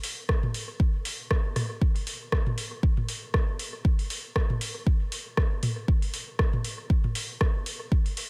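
A swung 118 BPM techno groove in 4/4 opens this nocturnal, deep fragment, with a soft vintage rhythm box ticking metallic hi-hats and rim clicks through a dub echo, its analog tone heard as if re-recorded in a large room. A layered, deep electronic kick sits up front from 0.3 seconds, while tape-warm analog electronic toms pump under sidechain compression. The overall sound is dry, carrying little reverb.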